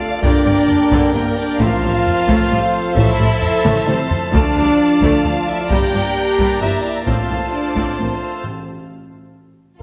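Dark and relentless, this cinematic orchestral film-score excerpt moves at 132 BPM in 3/4, with a full, brilliant pipe organ plenum and a tight French horn section holding sustained chords over bowed cello and distant double bass lines through a Gm, F/A, Am, Dm progression. Two lush violin sections carry the melody and a second line, the melody softly attacked and set in the background, while rich, even violas fill in beneath and a heavy-sticked taiko ensemble drives the pulse with fills at 3.7 and 9.1 seconds. At 8.4 seconds the harmony drops away into a break where round, soft-malleted timpani sound briefly, all within a wet concert hall reverb.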